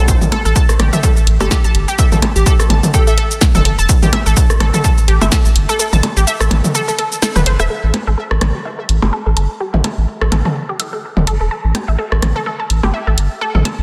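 Cool and hypnotic, this minimal techno excerpt runs at 126 BPM with a 16th-note swing, built on a round, deep analog bass and a squelchy, detuned blip pluck riff carrying chorus, delay and sidechain pumping, while a catchy square-wave unison lead with tape echo appears briefly from 1.4 to 3.1 seconds. A dry, punchy electronic kick sits up front until 5.4 seconds, joined by a punchy analog drum machine on hi-hat, rim click, shaker and snare, and a tape-warm, layered techno kit of percussion blips, rims and toms with a soft-clipped snare. The kick drops out from 5.8 to 7.7 seconds, a drum fill leads into a new section at 7.7 seconds, and the dense, heavily limited mix sits in light digital ambience.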